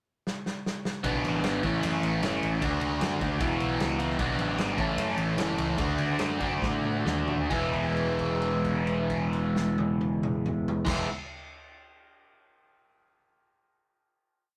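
Two up-front overdriven electric guitars, one biting and phased and the other crunchy, ring out chords in a jangly, carefree indie rock piece that moves from a short pickup bar into a pre-chorus over Bm7, A, D and Esus2. A vintage drum kit with dark cymbals and a punchy kick opens with a fill at 0.3 seconds, and a round, amped picked bass drives eighth notes beneath the guitars. The band slows from 4.2 seconds, and after a second drum fill everyone lands on a held E chord at 7.5 seconds, all captured with a rough rehearsal-room feel and tube saturation.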